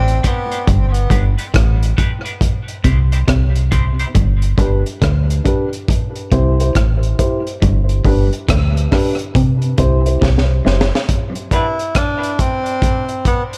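A swung, laid-back 69 BPM groove from a crunchy, gritty breakbeat kit with a high-tuned snare and tight kick drives this hazy dub reggae piece in G major, where a round, foam-muted fingered bass sits up front, a twangy clean electric guitar plays a very quiet riff, a slightly broken-up guitar through a small old amp adds chorused, echoing accompaniment, a boxy dark grand piano drops filtered stabs with tape echo, and a distant, roomy tenor saxophone with light vibrato appears briefly at the start and returns at 11.5 seconds in a break that follows a drum fill and runs during a filter sweep.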